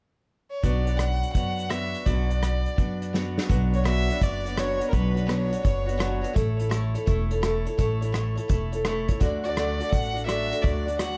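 A swung 4/4 groove at 168 BPM drives this heartfelt, sunny honky-tonk and classic country excerpt, with an unplugged kit played with bundle sticks (punchy kick, medium-tuned snare, rim clicks and hi-hat) alongside a woody, growly upright bass and a boxy picked archtop guitar up front. A rich, focused bowed fiddle with light vibrato carries the melody from 0.5 seconds, drops out and returns at 9.4 seconds, its tone set in slapback echo and plate reverb. A drum fill at 3.1 seconds ushers in the second section, where the opening Bmadd9 later gives way to A and then D chords, all within a dark, lightly reverberant studio room.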